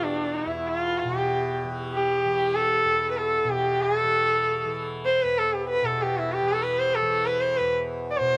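Introspective and meditative, this short piece of Hindustani classical music is cut from a longer performance and moves in a gentle three-beat metre. A single bowed sarangi carries the melody up front, its tone warm and smooth with light vibrato, gliding portamento between notes, and the faint ring of sympathetic strings beneath each phrase. Underneath, a tanpura holds a low drone, softly plucked, with a bright, buzzing, shimmering resonance that sits well behind the lead voice. Both instruments sound together for the full 8.4 seconds as one continuous passage. Close, detailed microphones and a light touch of reverb keep the sarangi's even bowing intimate and clear.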